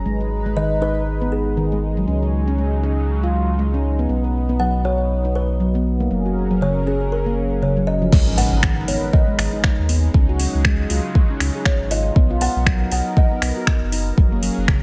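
A swung 4/4 afro house groove with an earthy, spiritual mood opens at 0.0 s on a detuned sawtooth pad with chorus and a round sub bass, both pumping against the sidechain, while a close-miked, ringing handpan plays arpeggios and, from 0.6 s, a woody kalimba carries the melody through delay. At the drop at 8.1 s, an up-front, deep electronic kick arrives with a produced afro-pop kit of crash cymbal, finger snaps and metallic hi-hats, and an electronic impact sits in the background for a moment. The chords move through G#m, C#sus4, B and F#, opening into G#m7 and Bmaj7 in the second half, all under light reverb in this excerpt from a longer piece.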